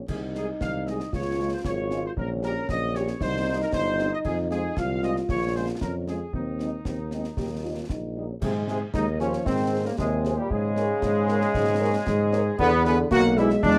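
Festive and proud, this military-style wind band march in 2/4 sets a trumpet section melody with light vibrato over a mellow, distant euphonium second line, a clear tuba bass up front and a dark French horn section in the background, all driven by close, dry clash cymbals, concert bass drum and concert snare drum, before an up-front trombone section adds sustained chords from 8.4 s in a warm production with light reverb.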